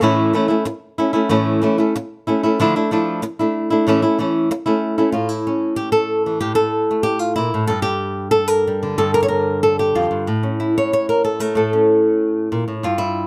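A bright, fingerpicked flamenco guitar plays alone and up front through this dramatic, mournful fragment of a longer piece, moving from A to Dmadd9 and back before a new section at 5.1 seconds passes through G5 and returns to A, with finger squeaks caught by close, detailed microphones in a light reverb.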